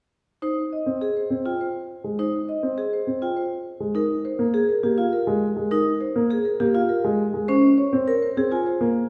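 Marimba and vibraphone enter together at 0.4 s in this bright, propulsive excerpt of minimalist classical pattern music in 3/4, the smooth marimba carrying the melody while the metallic, ringing vibraphone, played with its motor off, spins arpeggios. The mellow, boxy grand piano joins at 0.9 s with a low accompaniment, and all three mallet and keyboard parts sit up front. A reverberant recital hall places the listener further back in the room until the passage is cut off at 9.1 s.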